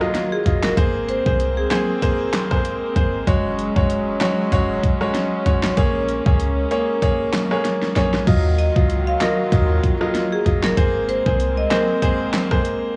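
An overdriven pop drum kit sits up front in this tough, bouncy dancehall fragment: a knocking kick, fat snare, rim click, handclaps, hi-hat and crash, with a drum fill at 7.6 seconds. The groove moves at 96 BPM in 4/4 with a light swing on the sixteenths, in Eb dorian, cycling through Ebmadd9, Abadd9, Gbsus2 and Bbm7. A clean 808-style bass supplies deep, boomy sine tones with a fast attack that then decay, while a brilliant baby grand piano plays accompaniment close to the ear, its action noise audible. A hard-mallet marimba carries a short, percussive melody with analog delay at 0.3 seconds and returns at 8.6 seconds. Beneath it all, a studio string section holds reedy, gut-string chords with light vibrato, pumped by sidechain compression. The piano, strings, drums and marimba share a home cassette sound in a small room.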